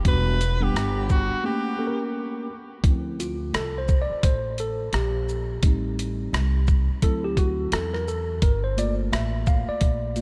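Cool and nocturnal, this jazz-hop excerpt sits in an unhurried 4/4 with a swung sixteenth-note lilt and a gently sharp tuning. A boom bap drum kit, the loudest part, anchors the groove with a thumpy kick, hi-hat, rim click and shaker, all carrying a gritty, pitched-down, compressed character and vintage 12-bit sampler crunch. Underneath, a woody, dark pizzicato upright bass with steel strings sits up front, while a worn, slightly out-of-tune tine electric piano lays down clean, direct chords from Em7 and A7b9 through Dm7, Am7b5, D7 and Gm7. A bright alto saxophone with vibrato, soft attacks and scooped notes offers a brief jazz-style phrase with delay, carrying on into the break that begins at 1.4 seconds before falling away by 2.1 seconds. From 2.8 seconds the electric piano takes a solo over bass and drums, all set in a light digital ambience.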